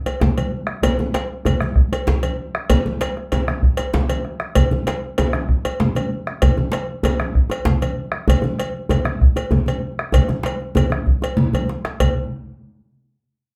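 West African traditional drum ensemble music, festive and powerful, moving at 129 BPM in a straight 12/8 feel in this short cut from a longer piece. A metallic cowbell and a tight, cracking djembe played with soft hands sit close and dry, while a deep, dark bombo sits up front as the heaviest voice, and bright, thin-skinned congas, medium-tuned and also played with soft hands, sound distant yet prominent. All four parts play together from the start until 12.1 seconds, with a drum fill at 11.4 seconds leading into a brief closing section, all set in a small, reverberant room heard from further back.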